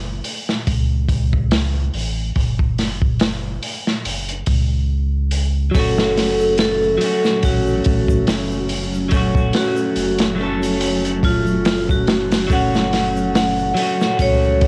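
A bright, ringing vibraphone struck with hard mallets carries the melody in this smoky, melancholic trip hop piece, its tone roughened by 12-bit sampler grit, tape echo and cassette saturation. A crunchy, up-front breakbeat kit with a tight kick and gritty, rolled-off snare and hi-hat opens at 0.2 seconds over a deep, round sub bass, all with a lazy swung feel and a single minor chord throughout. From 5.7 seconds a slightly broken-up electric guitar with harmonic tremolo, a very quiet vintage string machine playing cello chords, and a distant tube shaker join in, with a faint flickering, granular texture added at 7.8 seconds, all in a dry, lo-fi home cassette sound.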